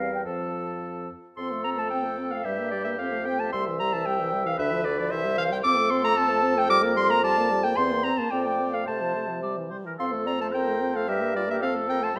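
A graceful, lively excerpt of a classical-period wind quintet movement opens with all five players together in F major at a quick 112 BPM in 2/4, played with a rubato feel. The airy flute carries the melody from the background, the oboe's distant second line has a light vibrato, and the clarinet sits up front as accompaniment beside a clear French horn, while a dark, soft-edged bassoon supplies the bass. The recital hall lends a moderate, roomy reverb, and a new section begins at 10.0 seconds, settling back on F.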